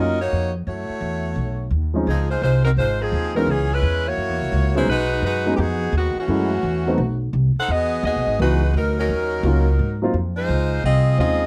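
Swinging and energetic, this short big band swing excerpt at 171 BPM sets a tight, up-front saxophone section with vibrato on the melody over a warm concert grand piano with a deep low end and a woody, growly pizzicato upright bass, all three playing throughout in light reverb as the harmony moves from Cbmaj9#11 through Gb7 and Emaj9 to a closing Dbmaj9.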